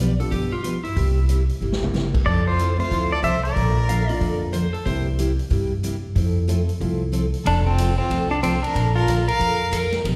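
Playful and cheerful, this short western swing excerpt moves at a brisk 185 BPM in F major, with a swing feel on the eighth notes. The upright bass sits up front with a woody, thumpy pizzicato tone, and a swinging big-band drum kit with a punchy kick and medium-tuned snare brings a fill at 1.6 seconds. A bright, full-bodied acoustic guitar picks the accompaniment with audible finger squeak, joined by a dark, boxy upright piano with long sustain until 7.0 seconds. The twangy, compressed pedal steel carries the melody up front, with volume swells and slide, entering at 2.3 seconds alongside a clear, focused fiddle played with light vibrato that adds a second line. A clean lap steel adds brief slide phrases of its own, while slapback echo colours the steel guitars, fiddle, acoustic guitar and piano, and the whole band comes across as a live gig through the venue's PA in a small room with recital hall reverb.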